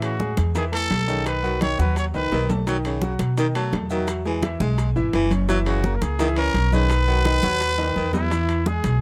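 A danceable, festive salsa excerpt opens with a raspy, growling trumpet melody up front over a gritty baritone saxophone second line, a bright upright piano accompaniment, a woody, thumpy pizzicato upright bass, hard-hand congas, and round bongos, ringing timbales and grainy maracas in the background; the trumpet drops out at 2.5 seconds and returns at 5.7 seconds, drum fills punctuate the phrases, and the saxophone stops at 8.2 seconds, all in a close, dry sound.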